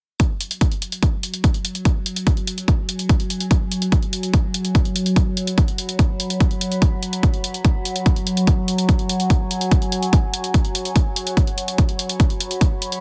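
A dense, heavily limited modern master with little reverb carries this driving, alien psychedelic trance excerpt at 145 BPM in straight 4/4, centred on an F#5 chord. A heavy, up-front electronic kick and layered, tape-warm hi-hats start at 0.2 seconds, and a resonant sawtooth-and-sine drone on F#3 arrives at 1.3 seconds, its moving overtones treated with chorus, phaser, reverb and sidechain pumping. From 2.6 seconds a deep, moody, detuned pad with a sub octave fades in at a low level, mellow and chorused, with its own reverb and sidechain pumping.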